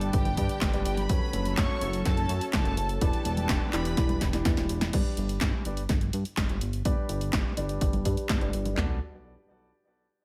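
This italo disco fragment moves at 125 BPM in a straight 4/4, with a nostalgic yet danceable mood set over chords of G, F#m and Em7, later settling on Bm7. A distant, bowed violin section carries the melody with vibrato and tape echo, while a thick, warbling unison pad with chorus holds sustained chords in the background; the strings drop out at 4.2 seconds and the pad at 4.9 seconds. A vintage baby grand piano with long sustain plays stabs through a low-pass filter and delay, and it gets a filter sweep once the strings and pad have gone. Underneath, a glossy, saturated synth bass with a plucky, fast attack and chorus holds down the low end. Two layered electronic house drum kits drive the groove with a punchy kick and snare, handclaps, hi-hat, congas, toms and crash cymbal. Studio reverb is on both kits, one also uses gated reverb, and a drum fill leads into the second section.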